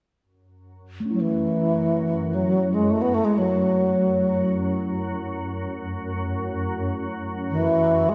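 Free-time and meditative, this haunting, spacious world piece in F# minor, cut from a longer work, opens with a shimmering, detuned pad droning on F#2 from 0.9 s, joined at 1.0 s by a ringing bronze singing bowl struck with a felt mallet and slowly beating in a boxy small room, while from 1.1 s an airy, up-front bass flute sings an expressive, vibrato-laden melody through tape echo, all set in a wet concert hall reverb with dulled highs.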